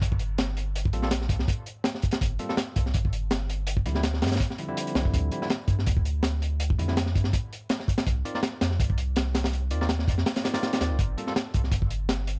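A crunchy, saturated breakbeat drum kit sits up front in a small room, its gritty, rolled-off top giving the sound a dark, warm character. This is a drum and bass excerpt with a jungle feel, frenetic yet nostalgic, built on hi-hat, a tight kick and a high-tuned snare with a light swing on the sixteenths. Beneath it, a thick, deep sub bass with a triangle-like tone and fast attack holds long sustained notes that carry a saturated edge. From 0.9 seconds to 11.3 seconds, a bell-like tine electric piano adds bright, clean stabs, trailed by a dub echo. The harmony moves through minor eleventh colours before settling on a suspended chord near the end of the 12.4-second clip.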